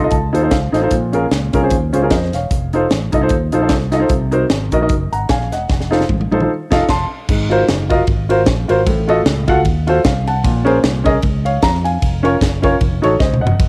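A woody upright piano opens this uptempo gospel excerpt with a short fill, its action noise audible and its tone carrying a cassette tape grain, before settling into solemn, fervent accompaniment over chords moving from F7 through Bbm7 and Cm7b5 at 151 BPM with a swung 4/4 feel. A dark, round fingered electric bass sits beneath, while an up-front, polished fusion kit with a high-tuned snare, punchy kick, ride, hi-hat, crash and toms drives the groove, also colored by the cassette tape. A drum fill begins around 5.7 seconds and the band hits an accent at 6.5 seconds, leading into a second passage at 7.3 seconds built on richer harmony like Ab13 and F7b9/A, all set in a light studio reverb with the intimate feel of a home cassette recording.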